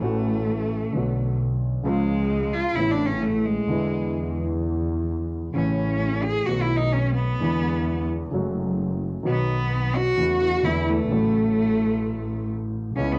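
This tango excerpt is dramatic and passionate, moving at 130 BPM in 4/4 with a rubato feel in A major. A rich, focused cello carries a solo second line across the full 13.2 seconds, bowed with vibrato and sitting up front yet with a distant quality, its tone colored by cassette tape. Beneath it, a concert grand piano supplies accompaniment with deep bass and short sustain, also shaded by cassette tape. A dark, expressive double bass, bowed by a single player with vibrato and portamento, anchors the low end through tube saturation. The harmony travels from F#m7/A through Bm, C#, E7 and B7 before settling on A6 near 11.1 seconds. A moderate studio reverb and the homespun cassette character frame the whole passage.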